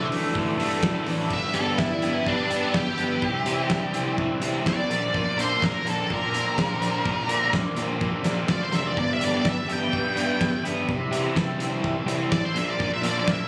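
Captured on a phone in the room with studio reverb and compression, this fragment of a longer indie rock piece sits under a light wash of reverb. The mood is upbeat yet wistful, moving in a straight four-beat pulse through Dsus2, G6, C and Bbadd9 chords. An octave-fuzz lead guitar sits up front with a dark, distorted tone and slapback echo, carrying the melody and stepping into a solo from 1.3 seconds to the end. Beneath it, a crunchy overdriven guitar picks a riff, while a second, brighter guitar plays its own riff in the background, dressed in lush chorus and slapback echo. A growly fuzz bass with overdrive anchors the low end, and a big rock drum kit with a punchy kick, a fat snare, hi-hat and crash fills out a large, smooth-sounding room. A very quiet analog pad of detuned sawtooth tones holds mellow sustained chords with a soft attack and long release throughout.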